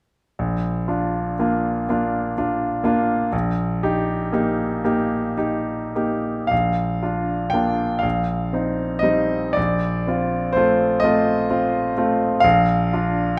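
A bright, up-front grand piano opens this fragment of a serene, tender romantic nocturne in Bb major, unfolding in 12/8 at a slow 33-43 BPM with free rubato across a range from Bb1 to G5, its harmony moving from Bb through Eb/Bb, Cm7/Bb and F7/Bb before returning to Bb at 12.4 seconds, heard through close, detailed microphones in a recital hall with moderate reverb.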